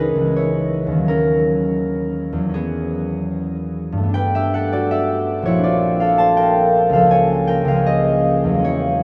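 A wistful, gentle classical piece for solo concert harp, played with a free, rubato feel across a short 9-second passage cut from a longer work. The thumb-plucked harp sits up front with a ringing, acoustic tone, moving from C#m through D#m7 and then a series of lush sixth-ninth chords. A huge, wet reverb places it in a vast, echoing space, so each note lingers long after it is struck.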